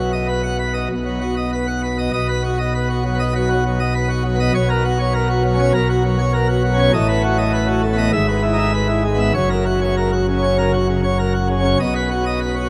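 A solo pipe organ on full plenum, its mixtures bright with baroque voicing and a crisp chiff and heard up front, spans F#1 to F#5 in a jubilant classical toccata at 99 BPM in B major, moving from B through F#/B, B7/A, E/G# and F# back to B across a 12.7-second passage cut from a longer piece and bathed in a huge, wet reverb of a vast, echoing space.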